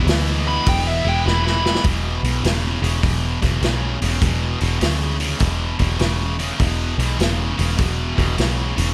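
A swung 4/4 groove drives this raunchy blues rock and southern rock excerpt, where a tight, bright, double-tracked distorted guitar riff and a dark, round, punchy overdriven picked bass sit up front over a mid-forward vintage acoustic drum kit with a rolled-off top, while a smooth overdriven lead guitar with analog delay plays a short solo from 0.5 to 1.8 seconds, capped by a drum fill as the chords move from E7 to E5, all in a dry sound.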